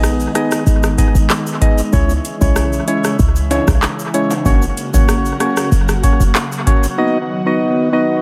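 Dancehall with a bouncy, sultry feel, this short cut from a longer piece rides a booming analog drum machine up front: a deep kick, metallic hats, handclaps, rim clicks and shaker carry tape warmth and analog delay, joined by a punchy, tight 808-style bass that drops out at 6.3 seconds. A hollow, mellow organ stab carries the accompaniment through chorus and analog delay, while an airy, breathy pad holds soft, detuned chords with chorus, phaser and sidechain pumping over a G#m, C#m, F# and B progression. Distant tube shaker and timbales sit low in the echo-heavy mix, which is dressed in light reverb and digital ambience.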